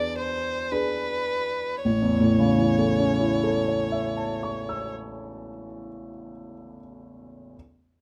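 Captured up close with detailed microphones and a light reverb, this brief fragment of a romantic classical duo unfolds at a yearning, elegiac 52 BPM in a rubato 3/4, slowing over its first 1.9 seconds as an E7 chord gives way to A, with a single rich, focused violin singing the bowed, vibrato-laden melody up front until 4.9 seconds while a concert grand piano with deep bass and an open tone carries the accompaniment through to 7.6 seconds.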